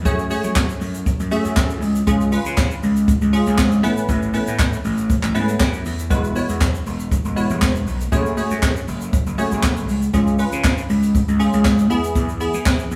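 This recording has the feel of a band playing live in one small room, with a moderate stone-room reverb around the parts. It is a driving, energetic dance-pop excerpt at 119 BPM in a straight 4/4, in F# minor with tuning at A4 = 439 Hz, cut from a longer piece. Up front, a gritty electric slap bass, overdriven and growly with a punchy, amped sound, spans E1 to F#3. A jazz brush drum kit sits equally forward, setting brushes on a high-tuned snare against a boomy kick, with hi-hat, shaker and handclaps alongside. A crisp digital wavetable chord stab, detuned in unison with a filter pluck, a fast attack and a decaying tail, sounds bright and evolving as it moves through F#madd9, C#, Aadd9 and Eadd9, then returns to F#madd9 and C# before closing on E. All three parts play from 0.1 s to 13.0 s.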